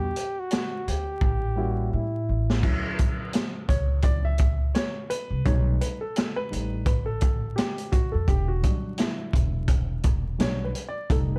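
Jazz-hop at 85 BPM in D major, this relaxed, smooth excerpt from a longer piece rides a gritty, saturated breakbeat kit with dark cymbals and a tight kick, over a woody, thumpy upright bass played pizzicato on gut strings. A breathy flugelhorn with vibrato and scooped notes carries the melody until 2.3 seconds, briefly joined by a dark trombone second line, while a drum fill leads into a mellow baby grand piano solo from 2.6 seconds, its action noise audible. The piano, flugelhorn and trombone sit in plate reverb, with chords moving from Em7 and A7b9 to Dmaj9, B7b13 and Em9, all within a dark production dusted with vinyl crackle.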